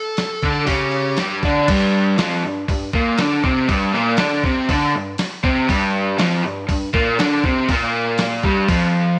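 Garage rock at 120 BPM in a straight 4/4, swaggering and rowdy, this cut from a longer piece opens on a G5 chord as a fuzzed, compressed lead guitar picks a brief distorted melody between G4 and A4 that stops at 1.4 seconds. A raw, double-tracked garage guitar sits up front, picking an overdriven riff from F2 to D4. A dusty soul sampler-style kit with a thumpy kick, medium-tuned snare, hi-hat and crash has a gritty, tape-warm grain, and its kick and snare drop out at 8.7 seconds, all inside a moderate spring reverb.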